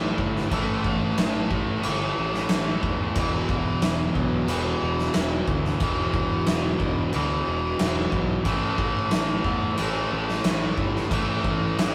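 A menacing, heavy hard rock excerpt at 91 BPM opens with two overdriven guitars riffing over power chords on A5 and E5, the sludgy distorted guitar up front and the cranked stack guitar bright in the background, with a punchy fuzz picked electric bass beneath them and a huge arena drum kit entering at 0.2 seconds with a fat snare, punchy kick and crash cymbal in a big natural room, all captured as a rough rehearsal-room recording with moderate reverb and warm saturation.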